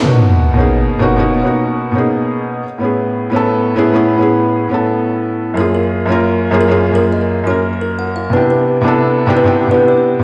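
A lightly swung drum and bass groove at 174 BPM carries this uplifting excerpt, where a felt-muted upright piano, soft and intimate with audible action noise and a touch of delay, plays accompaniment up front through Bmaj9, Amaj9, F#maj9 and Cmaj9 chords, an electronic sub drop lands as an impact at 0.1 seconds, and from 5.6 seconds a woody, thumbnail-plucked kalimba with vintage 12-bit sampler grit and tape echo spins bright arpeggios in the background, all set in a wet concert hall reverb as if played over a big sound system in a bare stone room.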